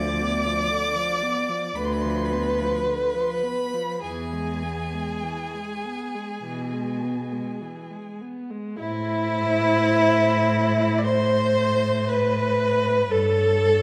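A solemn, elegiac string quartet movement in A minor opens with all four players sounding together, moving at a slow, rubato pulse of roughly 49 to 60 BPM in 4/4. The first violin carries the melody high in its range with expressive vibrato and portamento, its rich tone sitting at a distance in the blend. The second violin plays a smooth, even inner line placed up front. The viola adds a clear, focused accompaniment, while the cello anchors the bass with a close, vibrato-laden sound. The harmony passes from Bdim/D to E and settles on Am as a new section begins at 8.8 s, then turns to A7/G at 13.1 s. A wet scoring-stage reverb surrounds the ensemble in this brief romantic fragment, cut from a longer piece.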